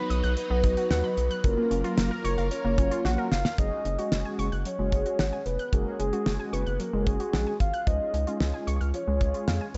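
A straight 4/4 groove from a damped 70s drum kit, with a fat snare and tight kick sitting up front, drives this upbeat, bright synth-pop excerpt cut from a longer piece. A round analog bass with a deep, square-and-sine tone anchors the low end beside the drums, while a warbly, dusty pluck with a lo-fi noise layer runs arpeggios through the whole passage. A soft octave-layered synth lead, full and dark with a sub octave, carries the melody over chorus, phaser and slapback echo, and mellow synth brass adds detuned, brassy accompaniment from 0.6 seconds. A swirling, vintage string machine holds phased chords only until 3.6 seconds, where a drum fill hands off to the second section as the harmony shifts from F#maj7 to F#sus2 and later C#. The mix sits in a small room with light reverb and a soft top end.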